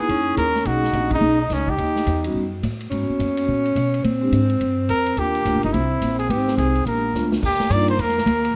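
Small-group swing and bop jazz at a brisk 213 BPM, relaxed and sophisticated, with a warm, punchy trumpet up front carrying the melody with light vibrato and pausing from 2.3 to 4.9 seconds, a mellow subtoned alto saxophone weaving a smooth second line, a metallic, ringing soft-mallet vibraphone with slow motor vibrato comping underneath, a woody, growly pizzicato upright bass, and a natural big-room drum kit with punchy kick, ride and crash. The band hits an early accent at 1.1 seconds, and the drums deliver a fill at 7.1 seconds as this fragment of a longer piece moves into a new section.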